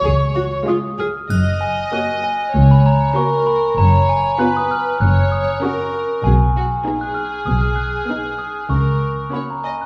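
A brief, mellow, hollow flute note opens this playful, whimsical film cue alongside bowed string sections, then drops away by 0.6 seconds. Two violin sections carry the melody and a second line, one clear and floating in the background and the other soft-edged and distant, both played sul tasto. Beneath them, a dark, woody double bass section and a cello section with light vibrato anchor the low end, while a rich, intimate viola section joins at 0.7 seconds to fill in the accompaniment. At the same moment, a bell-like glockenspiel struck with rubber mallets steps up front with a ringing melody, and a triangle sits dry and faint in the background from 1.3 seconds. The whole magical, quirky passage is bathed in scoring-stage reverb and carries the warbling pitch drift of worn old cassette tape, giving it a slightly unsteady glow.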